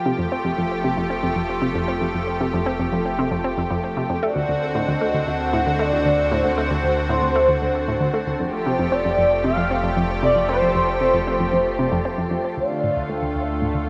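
A lush, airy unison pad with shimmer reverb opens this cosmic, expansive ambient excerpt at 115 BPM, joined from the start by a fat analog bass that fades in until 12.6 seconds, a very quiet, breathy wind-like tuned noise texture, and a round, nasal analog pluck riff with tape echo, before a smooth, expressive synth lead with vibrato enters at 4.2 seconds and a filter sweep on the arpeggio sound marks the shift to D minor at 12.6 seconds, all within a wet plate reverb.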